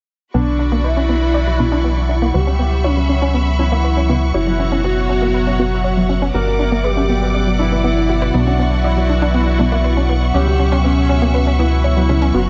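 A round, deep analog bass sits up front in this dark, driving techno excerpt, beneath a fat, detuned analog lead carrying the melody through lush chorus, cassette-tape colour and tape echo, while a clear studio string section holds sustained chords with a touch of vintage 12-bit sampler grit. A woody, nasal wave-folded pluck spins arpeggios and a muted, filtered dub chord stab sits in the background, both treated with filter sweeps and dub echo, as the harmony moves through Bmadd9, C#m7b5, F#sus4 and G. A mellow analog drone joins at 1.2 seconds and an ethereal, airy pad with phaser at 1.8 seconds, all set in light digital ambience within an echo-heavy mix with a soft top end.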